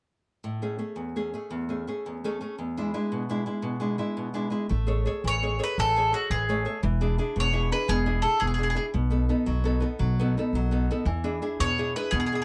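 Romantic and sunny, this short Italian folk serenade moves at 113 beats per minute in a straight 6/8, set in A major and cut from a longer piece. A small, fingerpicked nylon-string guitar opens alone, sounding the harmony and slipping in a brief fill at 2.0 seconds. At 4.7 seconds a woody, thumpy upright bass enters, its dark gut strings plucked low beneath the guitar. The bright, double-strung bowl-back mandolin takes up the melody at 5.3 seconds, returning briefly near the close. Chords move among Amaj7, E7 and B7, and all three acoustic instruments sit up front in a light reverb.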